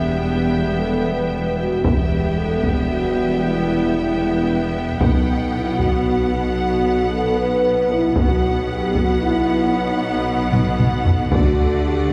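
Heard from well back in a wet scoring-stage hall, this cut from a longer epic orchestral film cue moves in a relentless, heroic 12/8 over E minor, B and D chords. A lush violin section carries the focused, vibrato-rich melody with a clear chamber violin section on an intense second line, while clear violas accompany and a dark French horn section holds sustained chords alongside bright trombones, over a mellow tuba and rich cellos and double basses in the background. Heavy-stick taiko drums with a vintage, band-limited tone enter at 1.8 seconds and play a fill at 10.5 seconds.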